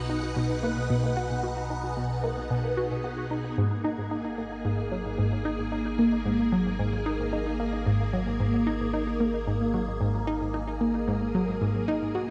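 A straight 4/4 pulse at 112 BPM drives this mysterious, cosmic stretch of sequencer-driven ambient space music in G# minor, cut from a longer piece and moving from B to G#sus2 at 3.6 s. A nasal, sawtooth analog pluck riff sits up front with chorus, phaser and tape echo, a filter sweep running across the synth arpeggio, while a swirling, vintage string machine holds sustained chords under ensemble chorus and phaser. A deep sine sub bass fades in beneath them throughout, and the echo-heavy, cassette-tape mix sits in a wet spring reverb.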